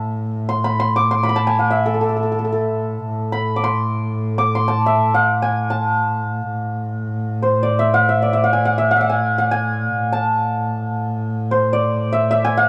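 A dark, warm recording with a short, wet booth ambience frames this melancholic, hypnotic Persian modal piece in free time, set in A avaz esfahan and cut from a longer performance. Up front, a hammered acoustic santur carries the melody with a shimmering, ringing tone across 12.7 seconds. Beneath it, a single bowed double bass holds a smooth, even drone on A2 with a warm vibrato.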